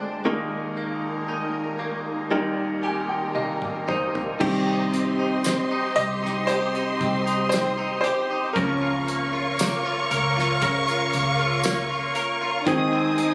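Set in a slow, straight 4/4, this tender, emotional pop ballad fragment opens with a bright, brilliant baby grand piano, lush bowed strings with expressive vibrato and portamento set at a distance, and a twangy, compressed clean electric guitar picking arpeggios through an ensemble chorus, all moving from Ebsus4 to Eb. The piano plays a fill from 2.3 seconds, joined by a drum fill as the damped 70s kit enters, its dry sound built on a fat snare, tight kick and dark cymbals. At 4.4 seconds the harmony turns to Cm and the piano takes an up-front solo, while a round, punchy foam-muted fingered bass settles in low, and from 5.4 seconds a jingly, close tambourine adds sparkle. The chords shift to Bbm/Db and then Ab/Eb, and a soft-attacked French horn section with light vibrato enters for a brief second line near the end. The whole sound carries a light club reverb and the ambience of a phone recording made in the room.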